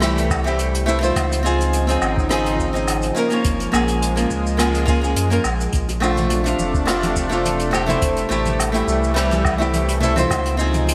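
This short cut from a longer sunset chillout piece sits in a moderate, lush hall with a bright 1980s-style digital sheen, and its mood is warm and sunny at 105 BPM in 4/4 with a light sixteenth-note swing. Up front, a small, fingerpicked nylon-string guitar plays the accompaniment through a digital delay, moving over rich chords that begin on a rootless Fmaj9 and drift through Dbmaj9, Gbmaj9 and Bbmaj9 before returning. Beneath it, a thick, detuned sawtooth unison pad holds sustained chords with a slow attack, long release and chorus, while a round, sine-like sub bass gives the low end a deep, rounded body. A distant, roomy brush kit of hi-hat, rim click, shaker and woodblock carries a gated reverb, and an analog-style electronic kick adds a deep pulse from 0.3 to 10.4 seconds. At 5.9 seconds, soft-handed bongos and congas join in the background with a compressed, saturated tone.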